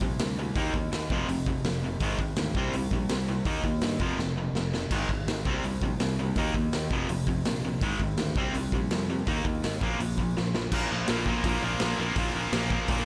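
Punk rock at 165 BPM in a straight 4/4, angry and raw, with a bright, overdriven electric guitar riffing up front over a lo-fi, overdriven garage guitar in the background, a growly fretless bass and a saturated, gritty drum kit with a punchy kick in a pumping stone room. The riff cycles through power chords on C, Eb, F and Ab, and drum fills land at 4.2 and 10.4 seconds. At 10.7 seconds a very quiet, double-tracked, high-gain guitar joins for the closing stretch of this fragment, cut from a longer piece.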